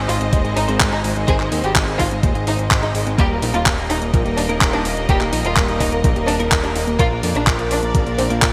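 A fat, nasal analog bass sits up front with an overdriven, thumpy electronic kick and sampler-style handclaps and hi-hat treated with gated reverb, driving this melodramatic, danceable italo disco excerpt at 126 BPM, while an intimate sul tasto violin section carries the melody through digital delay over biting background strings, a very quiet detuned unison pluck playing arpeggios and very quiet, compressed clean guitar stabs, all moving from Ab to Eb to Bb in a bright 1980s-style digital production with a lush hall reverb.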